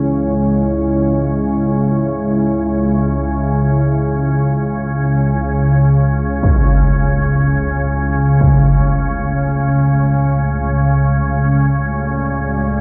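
Drenched in a huge, cavernous reverb with a dark production, this cavernous, desolate dark ambient drone drifts in free time in C# phrygian. An up-front, organ-like drone of detuned sine and triangle tones with ring modulation and ensemble chorus holds low beneath a deep, moody sawtooth pad with a sub octave and moving notch. The pad's sustained chords shift from C#m to D/C# at 6.4 seconds while the pad gradually fades out across the whole excerpt. At that same moment a huge, dark, low-passed impact strikes, ringing until 8.6 seconds in this fragment of a longer piece.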